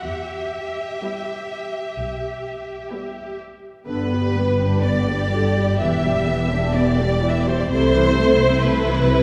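A smooth, even second violin line sits up front from 1.0 s, joining the first violins, whose expressive melody with soft-attacked vibrato opens this elegiac, solemn slow movement for string orchestra at 63 BPM, played with rubato in 4/4. Beneath them, dark, woody violas enter alongside at a distance, while lush, expressive cellos and softly attacked, warm double basses carry the bass. The harmony moves from E minor into G major at 3.9 s, and a concert hall's long reverb places the listener well back in the room in this passage cut from a longer piece.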